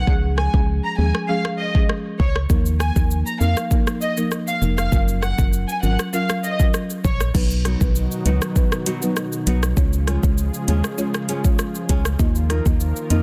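This dancehall cut, taken from a longer piece, moves at a straight 99 BPM in 4/4 with a tough, sultry mood, tuned slightly low at A4 = 439 Hz. An electronic afro-pop drum kit sits up front with a deep kick, metallic hi-hat, rim click, shaker and crash cymbal, its snare given soft clipping, while a hollow, percussive FM bass with an organ-like tone and fast, decaying attack anchors the low end. A buzzing marimba played with soft mallets adds dry, woody, rounded accompaniment over chords moving through Db, Ebsus2, Gbmaj7 and B. An intimate, darkly bowed studio violin section carries the melody with light vibrato and tape echo until 7.2 seconds. At 7.3 seconds a vintage, detuned sawtooth pad enters with warbling chorus and sidechain pumping, and from 7.6 seconds a fingerpicked classical nylon-string guitar adds arpeggios with audible finger squeak and tape echo. The whole sits in a digital ambience with a dense, heavily limited modern master.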